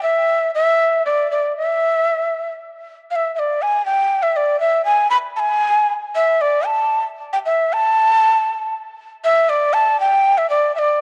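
Melancholic and wistful, this brief excerpt of Andean folk in 6/8 at 78 BPM features a lone cane quena, breathy and up front with vibrato and a crisp, chiffy attack, playing expressively between D5 and B5 through tape echo and a wet spring reverb, captured on a home cassette recording.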